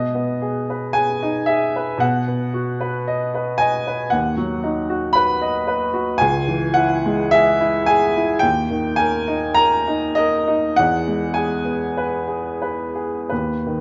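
A warm, open baby grand piano sits up front, playing alone through a serene, dreamy fragment of a romantic classical nocturne in G# minor, moving in an unhurried rubato 4/4 at roughly 42-59 BPM over chords that pass from G#m/B through B, C#m and E before settling on a rootless G#m/D# at 13.3 seconds, all captured by close, detailed microphones within a moderate recital hall reverb.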